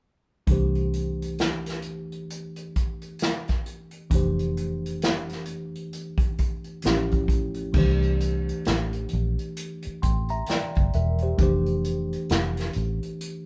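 Recorded with the band playing live in one room under moderate studio reverb, this late-night, sultry R&B and neo-soul passage, cut from a longer piece, moves at 66 BPM with a swung 16th feel: a worn, slightly out-of-tune tine electric piano sits up front with mellow, clean chords moving from C through F69 and A7b13 to C7 at 7.7 seconds. Beneath it, a vintage foam-muted fingered bass adds a dark, round, amped low end, and a roomy acoustic drum kit played with bundle sticks brings a tight kick, medium-tuned snare, hi-hat and dark crash cymbals.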